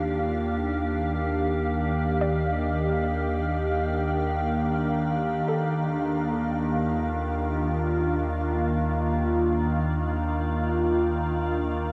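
A glassy, warbling FM pad sits up front holding slow-blooming Ebmaj7 chords through ensemble chorus and shimmer reverb in this weightless, serene ambient fragment in free time and Eb lydian, while a very quiet, dark, round pluck traces arpeggios until 7.8 s, a deep sine sub bass anchors Eb2, and a resonant drone with moving overtones hums beneath, all bathed in a huge, wet reverb.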